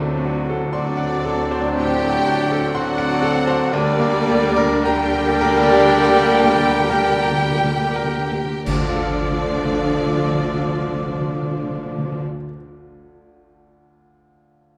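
A clear, intimate baby grand piano, sitting back in the mix, opens this passionate, tragic romantic excerpt on the melody with very quiet clarinet and bassoon, lush violas, cellos and double basses, mellow horns, bright trombones, distant trumpet stabs and close, dry timpani, while vibrato-rich violins, an oboe and a small flute group join at 0.7 s, the timpani take a fill from 3.7 s, and cymbals with bass drum enter on a band accent at 8.7 s, the rubato pace slowing inside a wet scoring-stage reverb.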